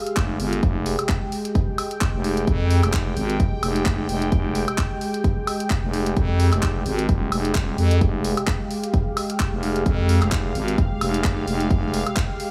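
Bass house at 130 BPM in F minor with a 16th-note swing, this bouncy, gritty excerpt pairs a growling, thick FM bass with tube saturation and sidechain pumping, sitting up front beside a punchy electronic kick, while layered handclaps, hi-hat and woodblock from a house kit fill out the groove beneath a bright, airy, detuned sawtooth pad that sustains a single Fmadd9 chord with chorus and its own sidechain pumping, all in a small, dry room.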